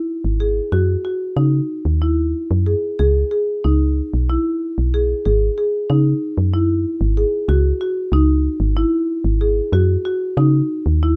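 A marimba played with medium mallets opens this restless, urgent chamber piece in 7/8, its rosewood bars ringing up front with close, woody arpeggios in a tight upper-middle range. At 0.2 s a soft, round FM bass joins, dark and decaying after a fast attack, sitting just as near in the dry, detailed sound. The harmony moves from Emaj9/G# to C#m7 at 3.0 s and settles on Emaj13 at 7.5 s before this fragment of a longer work cuts off at 11.2 s.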